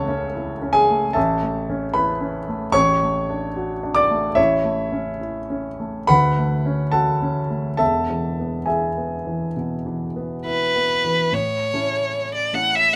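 The violin stands out most, though it arrives late, entering at 10.5 seconds with a rich, focused bowed line played by a single player with vibrato, sitting up front between B4 and F#5. Before that, the grand piano carries this tender, lyrical romantic classical duo alone, its intimate, natural tone close to the listener with audible action noise, spanning E1 to E6 as accompaniment. The tempo moves freely with rubato around 66 to 76 BPM in 4/4, in A major with tuning at A4 = 442 Hz. The harmony settles through A, D over A, Dmaj7 and E before returning to A at 11.3 seconds, where a new section begins. A light reverb surrounds the pair, and the passage is cut from a longer piece, ending at 13.0 seconds.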